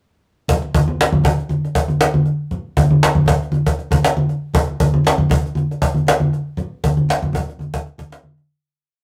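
A rough rehearsal-room recording with tube saturation and a wet studio reverb frames this short, strutting, playful funk piece at 118 BPM, played as a breakdown throughout. A snappy, compressed cajon with snares and hard hands sits up front, driving a syncopated funk groove full of ghost notes. Beside it, low-tuned, thick-skinned congas in a small-room sound lay down their own syncopated groove as the piece fades out from 6.6 seconds.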